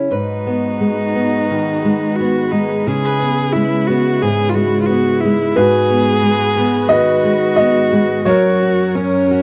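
A fingerpicked steel-string acoustic guitar opens this short slice of a longer acoustic folk-pop ballad, sitting up front with a full, auditorium-sized body as it lays down the accompaniment at 88 BPM in a straight 4/4. Almost at once a single cello joins close by, bowed sul tasto with a soft attack, light vibrato and an airy edge, carrying an intimate second line. Behind them a rich chamber string section holds sustained chords in the background, also played sul tasto with gentle vibrato. The harmony moves from G#m7 to C#m7 and back before settling on F#, giving the passage a hopeful yet nostalgic feel. At 5.6 seconds an upright piano takes the melody, woody and slightly boxy with long sustain and audible action noise that keeps it close and personal. The whole recording has a dry, close 1970s studio character with only light reverb.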